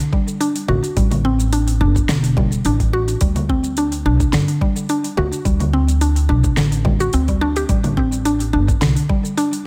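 A lightly swung sixteenth-note groove anchors this hypnotic, meditative organic downtempo cut from a longer piece, built on a soft, tape-warmed electronic kick and a layered deep house kit of congas, shaker, metallic hi-hats and a fat, overdriven snare. A round, mallet-like FM synth pluck plays mellow, fast-attack, decaying arpeggios up front with chorus and digital delay. From 0.7 seconds, a dark, thumpy pizzicato upright bass with gut strings pumps with sidechain compression, all set in a light reverb.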